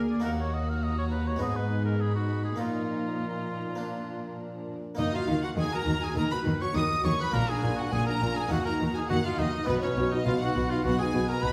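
Heard from further back in a reverberant recital hall, this baroque-style concerto movement comes across as a driving, stormy passage cut from a longer piece. Two rich, bowed chamber violin sections carry the melody and a second line with vibrato, one focused and the other expressive and close. A lightly vibrato oboe with a soft attack shares the melody in a classical solo style. Beneath them, an airy, bright harpsichord in the Italian style and a lush symphonic viola section fill out the accompaniment. A chamber cello section, expressive with portamento, holds the bass from the start, and a clear, smooth double bass section joins it at 5.0 s as the music moves into its second section.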